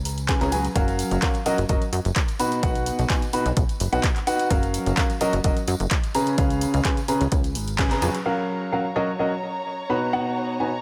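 A clear, vintage grand piano riff leads this joyful, euphoric piano house excerpt in F# major at 128 BPM, roughened by 12-bit sampler grit and shaped by a low-pass filter, tape echo and sidechain pumping. Beneath it, a punchy electronic kick, a tape-toned analog drum machine with handclaps and hi-hat, a dry tambourine in the background and a funky, plucky sawtooth bass, also pumping, drive a straight 4/4 groove, with a band accent at 7.8 seconds. At 8.3 seconds the rhythm section has dropped out, and a rich, bowed chamber violin section with vibrato holds sustained chords alongside the piano in a light small-room reverb.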